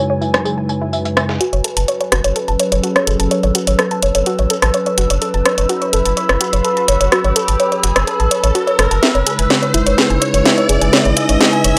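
A dry, gritty hardware recording with digital ambience opens this driving, dramatic melodic techno passage at 126 BPM in F# dorian, cut from a longer piece. A sweeping resonant pad holds sustained chords under a warbly, nostalgic tape-like pad, while a woody, nasal wave-folded pluck plays arpeggios through a filter sweep with tape echo, and a gritty sampler-style soul kit appears only briefly alongside an overdriven house kit with a cracking snare up front. From 1.4 seconds a build-up begins with a filter sweep on the pad, and a round, deep analog bass enters at 1.5 seconds; an electronic riser joins in the background at 3.5 seconds, and a drum fill starts at 9.0 seconds.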